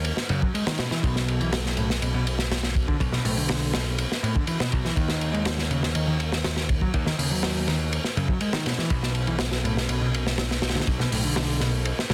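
A crunchy, up-front breakbeat drum kit and a growly, overdriven picked electric bass open this funky, raw breakbeat cut, the kit gritty and saturated with dark cymbals, a tight kick and a medium-tuned snare. From 0.3 seconds a second overdriven picked bass, round and dark with delay, plays a riff above the low line while the chords move between Ebm7, Bm and Ebm. Light studio reverb frames the parts in a dense, heavily limited modern master.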